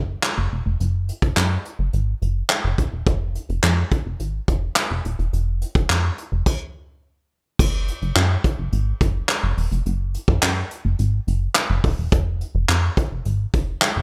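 A plucky analog bass sits up front, its punchy, funky sawtooth and pulse-wave tone shaped by a fast-attack filter pluck, a moving notch and a dark, decaying tail, all pumping under sidechain compression across a low range. This is a bittersweet yet confident dance-pop piece at 106 BPM in a straight 4/4, cut from a longer work. A soft brush drum kit joins almost at once, an acoustic set heard in a roomy studio space that feels distant yet sits up front, with a tight kick, a medium-tuned snare, hi-hat, handclaps and crash cymbal, all treated with gated reverb. A stop falls between 6.5 and 7.6 s, after which a second section begins and carries the groove on. The overall sound is a bright 1980s-style digital production in a fairly dry room.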